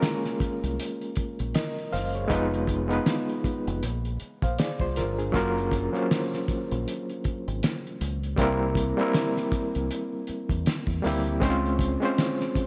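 Sensual and smooth, this short neo-soul and R&B excerpt sways in a swung 4/4, moving through Bbm7, Fm7b5, Bb13, Gbmaj7, C7 and Dbmaj7 under a bright 1980s-style digital sheen with moderate plate reverb and a touch of vinyl crackle. Up front, a reedy, overdriven electric piano pulses with fast tremolo through a combo amp, beside a cloth-damped, thuddy drum kit whose muffled, saturated hi-hat, tight kick and fat snare carry gated reverb and a rolled-off top. A deep, round dub bass, fingered and punchy, enters at 0.4 seconds to anchor the low end.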